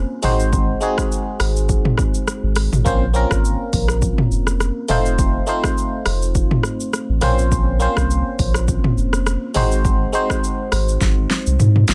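A biting, percussive FM electric piano sits up front with chorus and tremolo, voicing chords that move from Ab7 to Bbmadd9, F7 and back in this hypnotic, sultry afrobeats passage at 103 BPM in Bb minor, with a lightly swung sixteenth feel. Beneath it, a round sine sub bass holds sustained low notes, while a punchy, layered deep house kit of kick, fat snare, rim click, hi-hat, shaker and toms enters at 0.2 seconds and closes with a drum fill from 11.0 seconds. The mix is dry, and the clip is cut from a longer piece.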